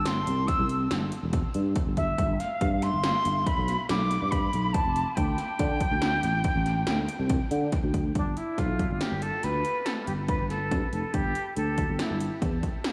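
Bright and intricate, this short progressive instrumental cut moves at 141 BPM in a straight 7/4 in G mixolydian, with an airy, expressive jazz flute carrying the melody through a diffuse ambient delay, a growly sustaining fretless electric bass thickened by ensemble chorus, and punchy, overdriven 80s electronic pad drums with a gated snare and metallic hats, all bathed in a dreamy, reverb-soaked mix whose harmony shifts at 8.2 seconds from an Em-G-Dsus4 passage to G and A5/G.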